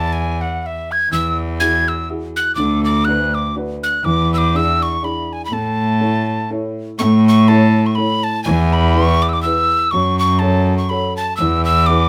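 Celtic folk waltz in A major at 123 BPM, cheerful and rollicking with a light swing, where a breathy, chiffy wooden whistle with vibrato carries the melody up front over a clear, nasal bowed cello bass, joined at 1.1 seconds by a dark, vintage upright piano accompaniment, all in a small room with modest reverb, in a short cut from a longer piece.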